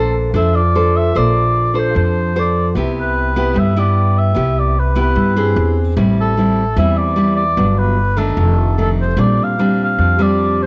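Breezy and sophisticated, this bossa nova fragment from a longer piece sets a mellow, distant oboe melody with light vibrato over fingerpicked nylon-string guitar with audible finger squeak and a woody pizzicato upright bass colored by transformer saturation, while a metallic, ringing vibraphone sits in the background from 0.5 to 5.7 seconds and returns at 9.6 seconds, all captured as a cassette home recording with light small-room reverb over jazzy chords such as Bbmaj9, E7b13 and Bb69.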